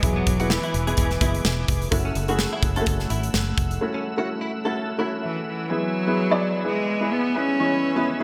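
Piano-driven pop with a dramatic, earnest mood and a light swing, cut from a longer piece and set in a lush hall reverb with a bright 1980s-style digital sheen. A woody, slightly detuned upright piano with subtle chorus carries the accompaniment over a smooth tonewheel organ's sustained chords, while a punchy, polished drum kit and a round, dark fingered bass drive the groove until a break at 3.8 seconds, and a clean, compressed guitar recorded direct picks a chorused riff. A rich, focused bowed cello with vibrato sings the melody briefly at the start, then returns at 5.2 seconds during a piano fill that begins at 5.0 seconds.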